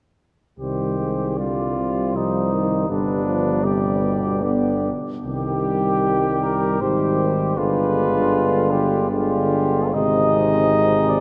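At 0.6 s a brass band enters together in a slow, elegiac hymn in triple time, the dark, smooth-topped cornet carrying the melody over a clear flugelhorn second line touched with light vibrato. Beneath them a soft-edged euphonium and a present trombone sit in the background as accompaniment, while a warm, distant tuba anchors the bass up front. The rubato phrasing gives the solemn chorale an uneven, breathing pulse, and a cathedral reverb with a long tail surrounds the band as the harmony settles onto Ab near 9.9 s in this fragment of a longer piece.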